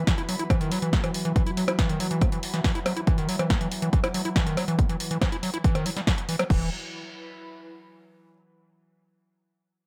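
A squelchy, gritty overdriven acid bass leads this intense, hypnotic psychedelic trance passage from the start, its resonant riff pumping through sidechain and trailing dub echo up front beside a heavy electronic kick and a punchy techno kit of snare, hi-hats, crash cymbal and percussion blips, both tape-warm with a small-room character. Behind them an evolving, warbling wavetable pad holds sustained chords with chorus, its own reverb and sidechain pumping, while a very quiet, breathy pad drifts higher and lingers until 8.2 seconds. At 6.5 seconds a tight, driving sequencer bass appears briefly in the background, the whole piece set in a light digital ambience.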